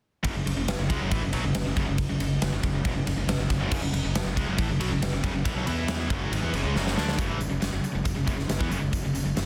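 A dense, heavily limited mix with light reverb opens this aggressive, heavy hard rock excerpt in F# minor at 138 BPM, cut from a longer piece and running in straight 4/4 from F#m to an E5 and back. An overdriven, cranked stack guitar and a tight, distorted guitar pushed into the background both play picked riffs, while a growly, punchy fingered electric bass recorded direct holds the low end. Up front, a big acoustic rock kit with a punchy kick, medium-tuned snare, hi-hat, ride and crash rings in a stone room and plays a drum fill from 6.8 to 7.2 seconds that leads into a new section.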